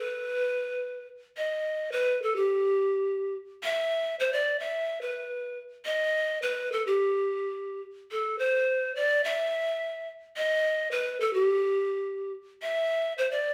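Earthy and melancholic, this short Andean folk fragment, cut from a longer piece, sits in a two-beat metre with a straight feel. A large set of pan pipes carries the music alone from start to finish, moving between G4 and E5. The cane tone is breathy and steady, each note opening with a soft attack and a touch of chiff, while the rolled-off highs keep the sound mellow. The pipes sit up front, surrounded by a wet, large studio reverb that gives the feel of musicians playing together in one room. A brief opening phrase gives way at 1.4 seconds to a longer passage, which begins anew at 10.4 seconds and carries the fragment to its close at 13.5 seconds.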